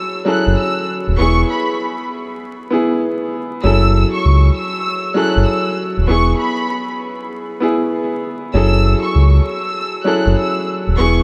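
Swung sixteenths at 98 BPM in 4/4 carry this gritty, tough boom-bap hip-hop excerpt in F# minor, where a clear, vintage grand piano with a cassette-tape tint sits up front on accompaniment over alternating F#m7 and E chords. A deep, full sine sub bass with an added octave enters at 0.5 s, and a distant, lush violin section sings a high bowed melody with vibrato, portamento and tape echo, all set in a dreamy cathedral-reverb mix laced with vinyl crackle.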